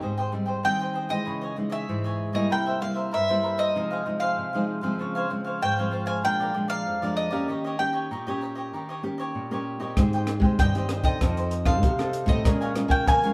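Crisp picked cavaquinho and a fingerpicked nylon-string guitar with fresh strings and a deep classical tone open this nostalgic, lively samba-choro passage, cut from a longer piece. At 0.6 seconds a bowl-back mandolin enters up front with the melody, its double strings picked high over changes that run from Abmaj7 through Dbmadd9, C7 and Bb7 to Eb7. At 10.0 seconds a second full-bodied fingerpicked nylon-string guitar adds a bass line and a compact cocktail drum kit arrives up front, dark and smooth with a rolled-off top, a punchy kick, hi-hat and rim clicks, all heard as a band playing live together in one room with a moderate large studio reverb.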